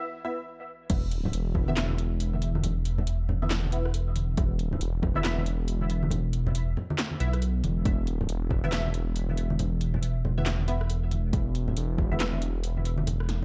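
A dark, rumbling detuned saw bass sits up front in this heavy, cavernous deep dubstep cut, driving a half-time, swung groove from the drop at 0.9 seconds. Before it, a muted, filtered dub chord stab opens alone, its detuned sawtooth plucks evolving through phaser, ensemble chorus and dub echo until it stops at 12.3 seconds. Overdriven electronic drums land with the drop: a deep kick recurring in short bursts, and a deep house kit with a punchy snare, metallic hats, claps, rim clicks and crash, both re-recorded in a large room, while bright, soft-handed congas play in the background of a dry, dark mix carrying a faint mains hum.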